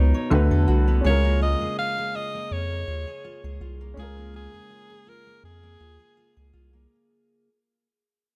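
Light reverb and a small-room ambience frame this smooth, romantic contemporary R&B fragment in Db major, which moves at 82 BPM with a gentle 16th-note swing and fades out from the start. A round, dark analog bass sits up front beneath an intimate baby grand piano with audible action noise, while a fingerpicked jumbo steel-string acoustic guitar plays full-bodied arpeggios through a digital delay until 7.5 seconds. At 1.1 seconds, as the harmony moves from D6 to Db6, a bright alto saxophone enters to carry the melody with vibrato, up front in pop style.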